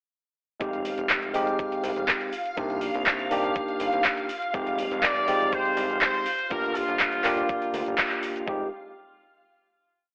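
This short nu-disco piece opens at 0.6 seconds with the whole groove at once: a thumpy four-on-the-floor electronic kick, an overdriven pop kit with claps, shaker and metallic hats on a disco backbeat, a fat, detuned sawtooth bass riff, a clean, up-front tine electric piano pushing syncopated rootless chords, and a lush string machine holding a high note through phaser, chorus and sidechain pumping. In F dorian at 122 BPM, the sleek, groovy progression cycles through Fm9, Cm9 and Gm7 with a cassette-worn, telephone-tinged sheen. A clear, distant trumpet section plays hook phrases with light vibrato and tape echo from 5.0 seconds, and after a band accent the music settles on a final Fm9 chord at 8.5 seconds.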